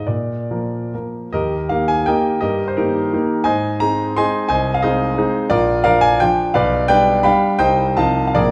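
A clear concert grand piano plays alone in this short cut from a longer romantic classical piece, a proud, rustic triple-time dance with dotted rhythms and free rubato, its up-front sound pairing deep bass with long sustain in a wet recital hall as the harmony moves from Bb through Eb and Ab to close on Cm and F7/C near 8.0 seconds.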